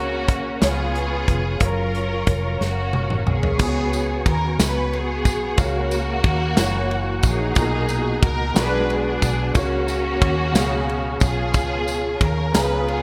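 This slow gospel excerpt in F# major opens with a clear, focused string section carrying the melody, its bowed vibrato set up front with a touch of delay, while a natural-sounding concert grand piano with deep bass and ensemble chorus accompanies. Beneath them, a soft, flute-like tonewheel organ holds sustained chords in the background through a fast rotary speaker and chorus vibrato, and a dark, foam-muted fingered electric bass adds a round, punchy low end. A modern acoustic drum kit joins at 0.3 seconds with a tight kick, medium-tuned snare, hi-hat, ride, crash and toms, all treated with gated reverb, and a drum fill from 2.6 to 3.6 seconds leads into the second section. There a jingly tambourine enters at 3.6 seconds, distant and in the background. Moving in a straight 6/8 at 60 beats per minute, the harmony travels through rich chords such as F#maj7, C#7sus4, Bmaj7 and Bm6, and the bright 1980s-style digital production, bathed in a lush hall reverb, gives the whole an uplifting, hopeful glow.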